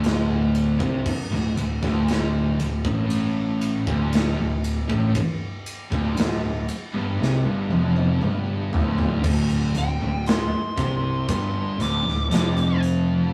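Brooding and ominous, this slow stoner and doom metal excerpt in D minor crawls at 59 BPM on a low riff from two thick fuzz guitars, one dark and one warm, backed by a double-tracked, compressed overdriven guitar, while a round, up-front fuzz fingered bass and a big acoustic rock drum kit with a punchy kick and bright cymbals drive it forward; a drum fill from 7.2 seconds leads into a short, high fuzz lead guitar melody at 9.8 seconds, all captured as a rough rehearsal-room recording with tube saturation and moderate reverb.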